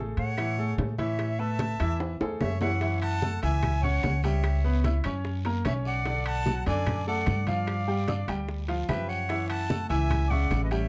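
This Afro-Cuban jazz excerpt has a dark production with light reverb, moving at 148 BPM in a straight 4/4 with a sophisticated, danceable mood. A breathy, metal jazz flute carries the melody with vibrato and tongued, reedy notes set in plate reverb, while a clear harmonica with light vibrato and a smooth top plays a second line beneath it. A bright, brilliant upright piano with short sustain supplies polished accompaniment, and a woody, thumpy upright bass with gut strings sits up front, plucked pizzicato. The percussion includes ringing metal-shell timbales, low-tuned congas with damped thick skins, tight high-tuned bongos played with soft hands, and very quiet claves, with the congas and bongos kept close and dry in the background. After a drum fill at 2.0 s, a raspy guiro joins at 2.8 s as the harmony moves from Amaj7 to F#m7 and on through Bm7 and G5 before returning to F#m7.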